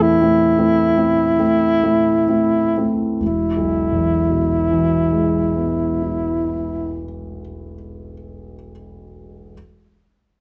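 A dark production with light reverb frames this short excerpt of a warm, lyrical romantic classical duo in E major, moving in a rubato 3/4 at 41-56 BPM. Up front, a clear alto saxophone sings the melody in classical style with vibrato and a smooth top. An intimate, vintage-toned concert grand piano accompanies with deep bass and audible action noise, its harmony moving from Am/E to E at 3.2 seconds after an opening that slows down; the saxophone stops at 7.0 seconds, leaving the piano alone until 9.5 seconds.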